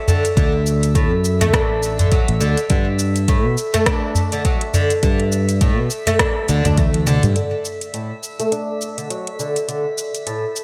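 A loping 4/4 groove with a swung sixteenth-note feel drives this earthy organic downtempo piece, cut from a longer work. A deep, tape-warm electronic kick and a produced afro-pop kit of metallic hi-hats, rim clicks, shaker and toms, set in a small room with gated reverb, share the beat with a small, live-sounding udu. Up front, a growly, punchy fretless electric bass sustains low notes through tube saturation, lush chorus and sidechain pumping, while a bright, woody oud plucks double-string arpeggios through a low-pass filter and delay. Far behind them, a calm glass-harmonics texture drifts on slow-blooming, chorused sine overtones. Around a drum fill at 6.8 seconds, the udu, kick and bass fall away, and from 7.4 seconds the harmony settles on Asus4 as a filter sweep moves across the oud. A moderate plate reverb and crisp 1980s-style digital sheen frame the whole mix.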